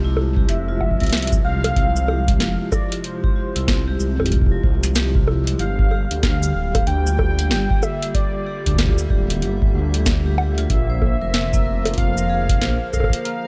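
This glitchy, eerie IDM excerpt in F melodic minor opens at 0.0 s with a warbling, lo-fi pad of sustained chords, treated with chorus, phaser and reverb and set in the background, alongside ringing vibraphone arpeggios struck with medium hard mallets and carried on dub echo. A rumbling, detuned saw bass sits up front as an analog drum machine adds punchy snare, metallic hats, bongos and cabasa over a deep electronic kick, both re-recorded in a large room and swung on the 16ths at 94 BPM in 4/4. From 0.5 s a velvety, chorused synth lead with vibrato and dub echo sings the melody over Fm, Gm7 and Bb, with a break at 13.3 s in an otherwise dry mix.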